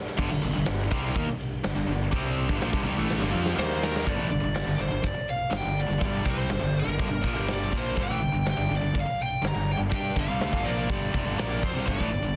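A very quiet tonewheel organ opens this driving, menacing hard rock excerpt with piping, scooped sustained chords, its key click and slow rotary-speaker chorus vibrato audible until it stops at 4.1 seconds. Almost at once a huge arena drum kit arrives up front, with a punchy kick, medium-tuned snare, hi-hat and bright crash cymbals ringing in a natural hall sound. Two picked rhythm guitars sit in the background playing the riff, one tight and distorted, the other overdriven and warm, over a growly, fuzz-laden fingered bass. From 3.6 seconds a lead guitar through a small cranked amp carries the melody up front, overdriven and touched by slapback echo, as a drum fill leads into the next section and the harmony moves from G minor through an Eb power chord back to G minor. The mix is dense and heavily limited in a modern style, with a small room ambience around the band.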